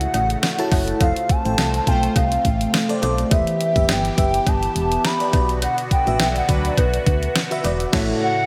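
A lush hall reverb and digital ambience give this nostalgic, romantic slice of 1980s-style pop at 104 BPM a big arena sound, with a clean 12-bit drum machine up front, its thumpy kick and fat snare joined by hi-hat, tambourine and crash, while a very quiet metallic cowbell sits in a small room and a punchy, round FM bass holds the low end. A soft, hollow, woody clarinet-like synth lead carries the melody with vibrato over a dreamy FM electric piano layered with a soft pad, both with chorus and slapback echo, and a swirling, phased analog pad sustains the chords as they move from A6 through F, Em and Bm. Bold, nasal analog synth brass stabs sit in the background at 1.9 and 6.5 seconds, and the band hits an accent at 7.9 seconds as the harmony returns to A6.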